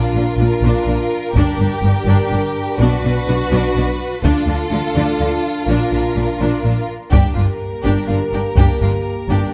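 Heroic and relentless, this cinematic orchestral cue in G minor moves at 83 BPM in 6/8, with a focused, vibrato-rich violin section carrying the melody over a lush second violin line, a distant viola accompaniment, roomy sustained French horn chords, and bowed double bass and intense cello sections on the bass, while saturated, compressed taiko drums struck with hard sticks enter at 1.4 seconds to drive a build-up that lasts until 7.1 seconds in a moderate scoring-stage reverb, all cut from a longer piece.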